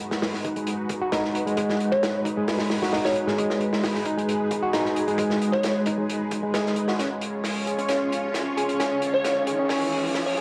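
Gritty and raw, this short breakbeat cut at 133 BPM in G# dorian builds throughout, with a lush, detuned pad sustaining chords under chorus, phaser and sidechain pumping while a crunchy, saturated drum kit with a tight kick and rolled-off top drives the straight 4/4 groove. Up front, a barky, reedy electric piano riff carries overdrive, fast tremolo, 12-bit sampler grit and analog delay, and a glassy wavetable pluck enters at 1.9 seconds with a crystalline, AM-radio-tinged melody. A drum fill arrives at 7.0 seconds as the harmony moves from G#m7 to C#, joined by an electronic riser from 8.0 seconds, all wrapped in wet spring reverb, cassette tape and vinyl crackle.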